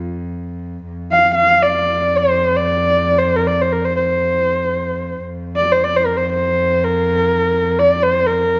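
In free time, this proud, galloping Mongolian folk piece, cut from a longer work and tuned to A4 = 438 Hz, opens with a single bowed cello holding a low F2 drone, its reedy, nasal gut-string tone set distant in period style. At 1.1 seconds a dark, husky horsehead fiddle enters up front with the melody, bowed on horsehair strings between Bb4 and F5, its soft attack, vibrato and expressive portamento crowned by a smooth top. Both play until 8.6 seconds, captured by close, detailed microphones in a recital hall with moderate reverb.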